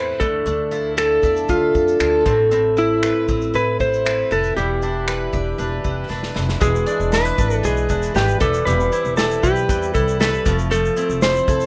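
Reflective and tender, this straight-feel acoustic pop excerpt at 117 BPM sets an up-front, slightly broken-up electric slide guitar melody over a shimmering, octave-doubled picked twelve-string acoustic guitar, round mandolin arpeggios, woody pizzicato upright bass and an unplugged drum kit with finger snaps, shaker, a punchy kick and bundle-stick snare, where a drum fill at 6.1 seconds leads into a second section that brings in a grainy tube shaker in the background and moves from Dmadd9, Amadd9 and Em7 to E7, Cmaj7/E and Fmaj7 under light reverb.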